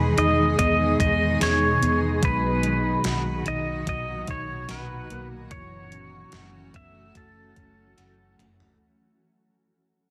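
Bathed in a plate reverb and squeezed into a heavily compressed, radio-like sound, this short dream pop passage, cut from a longer piece, fades out across its whole length and feels ethereal and blissful. Up front, a bright, twangy pedal steel guitar carries the melody with fingerpicked slide lines, volume swells and delay. Beneath it, a granular cloud pad holds sustained chords that blur and evolve with a full-bodied, sine-like glow, while a dark, clean electric guitar plays fingered arpeggios through ensemble chorus and delay. A vintage foam-muted electric bass gives a round, punchy low end, and a gated 80s digital drum machine enters at 0.2 seconds with a thumpy kick, overdriven gated snare, hi-hat and toms, closing with a fill from 8.0 seconds. The harmony drifts from Emaj7 to Bmaj7 and settles on F#m7.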